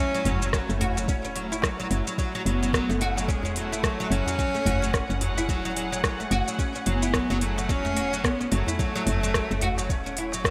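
A plectrum-plucked, double-strung oud sits up front in this hypnotic, earthy organic downtempo piece, cut from a longer work, playing bright arpeggios through digital delay over a single F#m7 chord in F# minor. A focused solo cello carries the bowed melody with vibrato and its own delay. Behind it, a con sordino string section, veiled and distant, holds sustained chords with sidechain pumping. At 109 BPM in 4/4 with a swung 16th-note feel, an organic electronic kit with crisp hats, rim click and shaker plays alongside a very quiet darbuka of clay shell and natural skin, and a soft electronic kick enters at 0.5 seconds. A round, mellow FM bass with a fast attack and a decaying tone also pumps to the sidechain, and an airy, breathy wind-like noise texture drifts in at 3.0 seconds. The 1980s-style digital production places the parts in a lush hall reverb with studio ambience.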